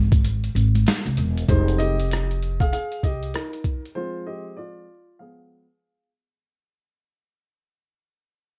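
A smoky, cool jazz-hop excerpt at 97 BPM in F minor, swung on the 16ths, opens with a growly, woody upright bass, joined at 0.1 seconds by a gritty, compressed boom bap kit with a thumpy kick, snare, rim click and hi-hat, plus very quiet, dry egg shaker and congas. At 1.5 seconds a dark, mellow upright piano takes a low-pass-filtered solo with a filter sweep over Fm7, Dm7b5 and Fdim as the music fades out, and the drums drop away at 4.0 seconds for a break. Worn, warbling tape with vinyl crackle and pitch drift colours the small-room sound.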